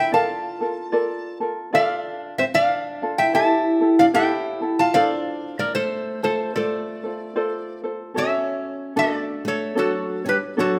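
This languid, dreamy Hawaiian piece opens with all three parts together: a metal-body resonator slide guitar carries the melody up front with a metallic, nasal tone from fingerpicks and slide, while a picked steel-string acoustic guitar adds a bright second line with audible finger squeak, and a mellow, thumb-plucked ukulele gives light accompaniment close by. The swung feel moves through minor-leaning harmony before shifting to a major chord at 8.2 seconds for a brief new section. A moderate recital-hall reverb gives the sound an airy sense of space, and the recording is cut from a longer piece.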